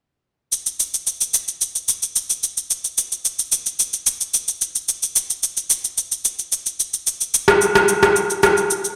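An electronic shaker and rim click sit up front in this short amapiano fragment, cut from a longer piece and running from 0.5 to 9.0 seconds at 110 BPM in a straight 4/4. The percussion has a produced, electronic character and carries the passage. A wet digital room reverb, with a decay of about 1.2 seconds, wraps the hits in a large studio ambience, as if the groove were played on a big sound system in a bare room. The mood is late-night and hypnotic, with the spare percussion and its lingering reverb tail setting a trance-like pulse. It reads as a single section, a stripped-down glimpse of the track's rhythmic foundation.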